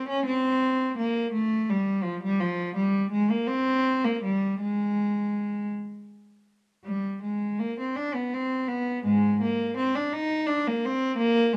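Classical baroque-style suite movement for unaccompanied cello, a solemn, grave passage cut from a longer piece, moving in a flexible 6/8 at roughly 52-58 BPM in dotted quarters with rubato. A single bowed cello plays alone and up front throughout the 11.6 seconds, ranging from Ab2 to Eb4 with a rich, reedy gut-string tone and light vibrato in period style. A moderate stone-room reverb and a dark, warm production surround the instrument.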